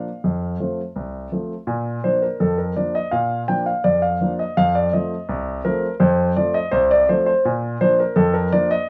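A polished, up-front grand piano plays cheerful, lively ragtime alone in a straight 2/4 at 83 BPM in Bb major, spanning C2 to G5 and tuned to A4 = 443 Hz, as it moves through F, Bb, F7 and back to Bb across this 8.9-second excerpt, cut from a longer piece and recorded live in one room with a moderate large-studio reverb.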